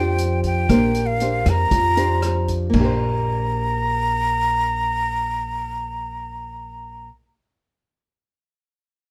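Romantic and breezy, this short bossa nova excerpt moves at 117 BPM in a straight 4/4, settled in Bb major and opening on a Bb69 chord. A breathy metal jazz flute carries the melody up front, its soft attack, vibrato and lifted highs giving the line an expressive, airy voice. Beneath it, a small-sounding nylon-string guitar is fingerpicked for the accompaniment, while a woody, thumpy upright bass, played pizzicato on steel strings, sits close and present in the low register. A swinging big-band drum kit joins briefly from 0.2 to 2.9 seconds, distant and roomy with a punchy kick, a rolled-off top, and touches of china cymbal, hi-hat, rim click and toms. A new section begins at 2.7 seconds, and the whole sits in a moderate small-room reverb with a dark, warm production.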